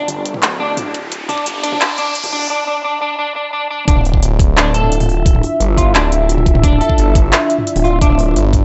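Cut from a longer piece and set in light reverb, this dark, cinematic half-time drum and bass opens with an electronic riser over fingered, slightly broken-up electric guitar arpeggios and a deep, evolving analog pad, while a swirling, saturated detuned saw bass and an up-front layered kit of crisp hats, handclaps and toms drive the build-up, until a knocking electronic kick returns at 3.9 s to launch the drop.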